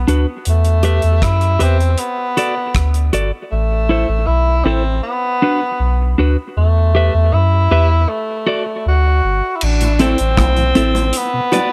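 A light reverb and small-room ambience frame this meditative, deep dub reggae passage at 79 BPM in straight 4/4, cut from a longer piece and centred on A dorian. A warm tenor saxophone with light vibrato carries the melody up front, punchy yet roomy, its line trailed by dub echo, while a round, soft sub bass sits prominently underneath with a fast attack and sustained, mellow tone. A dark, compressed clean electric guitar, fingered and also treated with dub echo, accompanies through a cycle of Em, D, Am and Bm chords. The damped 70s drum kit, dry and airy with dark cymbals and a tight kick, plays crash, hi-hat, kick and rim click at first, then drops out at 3.3 seconds and returns at 9.6 seconds as the second section begins. There a mellow tonewheel organ slips into the background with key click and a slow rotary speaker, and low-tuned, distant bongos with dub echo join at 10.0 seconds, deepening the closing bars.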